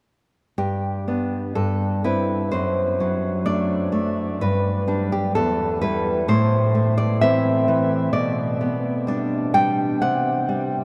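A romantic piece for solo classical guitar in G major, sunny and tender, moving at a rubato 64 BPM in 2/4 through a brief passage cut from a longer work. The nylon-string guitar plays alone from 0.6 to 10.8 seconds, fingerpicked and up front, its full-bodied tone and fresh strings ringing across a range from E2 to G5, with audible finger squeaks. A huge, wet reverb places it in a vast, echoing space, and the harmony moves from G through C/G, D7/F#, Em and Am before settling on a C5 at 10.0 seconds.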